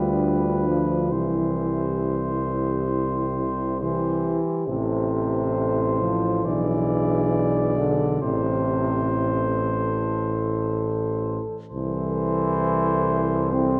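Heard in a dark production with a moderate concert-hall reverb, this lyrical, hymn-like classical brass band excerpt unfolds at a rubato 68 BPM in 4/4, its mellow cornet carrying the melody above a French horn section on the second line and a soft-attack euphonium, both in the background, while a distant, roomy trombone with light vibrato accompanies and a clear tuba holds the bass up front, every part sounding throughout the 13.8 seconds as the harmony moves from Bdim/D through C and Am to G#dim/B and back to Am.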